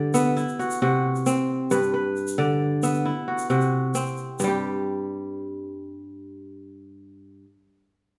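A ringing, crisp kora sits up front, fingerpicking flowing arpeggios that span from low G2 to high E5 across the whole fragment. This is West African traditional string music with a hypnotic, flowing mood, moving at 89 BPM in a straight 12/8 counted in dotted quarters. The harmony moves from C to G and back to C before the chords drop away at 4.4 s, where a new passage begins. A grainy, bright egg shaker adds soft percussion in the background, playing until 4.6 s, after which the kora carries on alone to 7.5 s. A moderate recital hall reverb gives the sound an airy sense of space, and the clip is cut from a longer piece.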